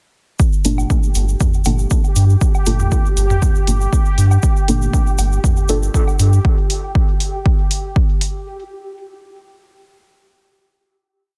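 A hazy, hypnotic dub techno piece opens at 0.4 s with a punchy, overdriven four-on-the-floor kick and a grainy, hand-played shaker in sixteenths, soon joined by a round, pumping off-beat analog bass, metallic programmed hi-hats, sparse, dark chord stabs steeped in chorus, phaser and dub echo under a filter sweep, echoing overdriven woodblock and toms in the background, and a bubbling, resonant stepped-filter texture holding a high note until the piece ends at 8.5 s, set in a dry, dense, heavily limited mix.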